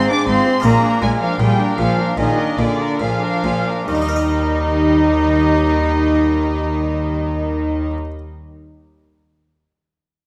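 Festive and lively, this short passage from a baroque-style concerto movement opens with a solo cello singing a nasal, gut-strung melody from a slight distance, while a close, warm violin section carries the high line above it and a second violin section adds a smooth-topped counter-line in the background. A dark, distant viola section and a bright, plucked harpsichord fill out the accompaniment, and from 0.3 seconds a shadowy cello section and a rich double bass section lay down the bass, all the string sections in period style with light vibrato. The music slows through its first 3.9 seconds before settling onto a home chord in a moderately reverberant concert hall.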